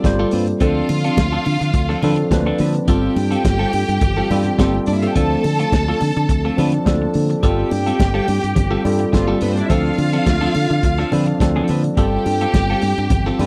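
A dry, close recording in a 1970s studio style, with little reverb, frames this celebratory, danceable disco groove at 106 BPM in a straight 4/4, cut from a longer piece. A muffled, lo-fi soul drum kit with a fat snare, tight kick and hi-hat drives the beat, joined from 0.1 s by bright, high-tuned congas sitting very quietly in the background. A fingered electric bass with a direct, warm tone anchors the low end, while a worn, slightly out-of-tune tine electric piano, colored by tube saturation and a subtle chorus, comps alongside a clean, picked electric guitar given a compressed edge and a phaser. Above them a lush, bowed string section with focused vibrato and a smooth top carries a second line that reaches up to A5. The harmony sways between G9sus4 and Dm7 throughout, keeping the warm, celebratory party mood steady from start to finish.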